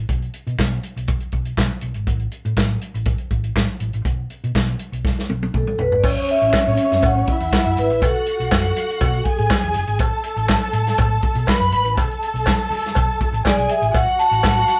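A straight 4/4 disco groove, driving and glamorous, rides on a punchy vintage kit with dark cymbals, handclaps and toms and a round, amped hollow-body bass, and after a drum fill at 5.0 seconds a mellow, ringing soft-mallet vibraphone melody enters at 5.6 seconds while a lush, up-front bowed string section with expressive portamento and a close cowbell in the background join at 6.0 seconds, the band heard together in one room with light reverb.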